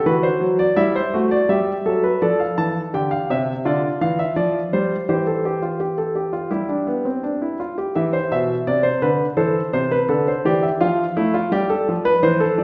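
Solemn and driving, this short excerpt from a classical, baroque-style three-part fugue features a lone baby grand piano, natural and up front with short sustain, ranging from B2 to A5 in a straight 4/4 through a somber progression that reaches C at 8.0 seconds, all set in a wet recital hall reverb whose dull, rolled-off top gives the sound a churchly air.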